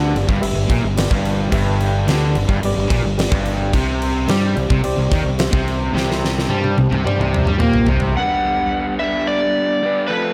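This swaggering, driving classic rock excerpt opens on a wall of riffing electric guitars (a cranked, double-tracked stack guitar, a crunchy one in the background and a very quiet third) over a growly fuzz bass and a reedy electric piano shimmering with fast tremolo, while a huge arena drum kit with a punchy kick, fat snare and bright cymbals enters at 0.2 seconds and plays a fill from 5.9 seconds before a dark slide guitar, played with fingerpicks, takes the melody up front at 8.2 seconds in a light room reverb.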